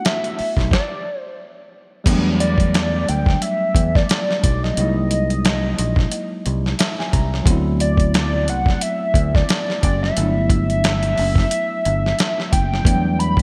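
Late-night and introspective, this neo-soul R&B excerpt in E minor moves at 89 BPM with a swung 16th-note feel, as a hollow, woody square-wave lead with chorus and vibrato carries the melody over a clean tine electric piano through a combo amp, a gritty, tape-toned sampler-style drum kit with a thumpy kick and gated reverb sits up front, and a fingered electric bass joins at 0.4 seconds, all framed by bright 1980s-style digital production and light reverb, with a band stop at 0.7 seconds and an electric piano fill at 6.4 seconds over chords moving from Em7 through C7alt and D7 to Gmaj7.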